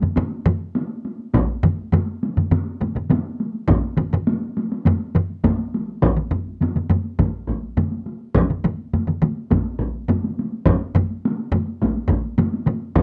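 A dry, close 1970s-style studio sound with light reverb frames this cut from a longer Japanese traditional taiko piece, ceremonial and driving in a straight 4/4 that starts at 103 BPM and speeds up across its 13 seconds. Three taiko ensembles sound from the start: one struck with heavy sticks in a live room up front, another with hard sticks that sits close, dry and up front, and a third heavy-stick group set in the background. At 1.3 s a fourth ensemble joins up front, its hard sticks carrying a vintage, band-limited tone, and the music moves into a new section at 6.0 s.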